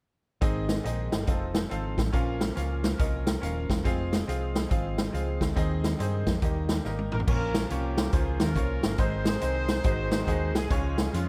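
Swinging at 140 BPM in 4/4, this hopeful, uplifting uptempo gospel excerpt pairs a brilliant, worn concert grand piano comping through tape echo with a reedy, key-clicking tonewheel organ on fast rotary sitting very quietly underneath, a round, punchy hollow-body electric bass, and an up-front big-band drum kit with dark cymbals that lands a fill at 6.8 seconds before a clear, smooth-topped horn section takes the melody from 7.1 seconds over chords moving from Ab through Bbm to Db, all in a dry, echo-heavy mix.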